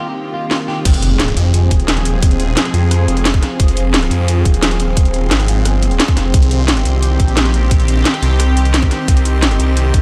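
Driving straight 4/4 at 175 BPM, this dark, futuristic slice of technical drum and bass in F minor drops at 0.9 seconds, where a tight, up-front electronic kick and a swirling, thick, detuned saw bass with phaser, tube saturation and sidechain pumping take hold, joining a drum kit of cracking snare, metallic hats, rim clicks and crash cymbal that began at 0.5 seconds. Before the drop, a slightly broken-up electric guitar plays fingered arpeggios through diffuse ambient delay until 0.8 seconds, and a very quiet electronic swell and impact sounds from 0.3 to 2.2 seconds. Throughout, an airy, bright, resonant pad with chorus and sidechain pumping sustains chords over a Cm–Fm–Cm progression, while a blurred granular cloud pad with built-in reverb drifts in the background, all in a light reverb.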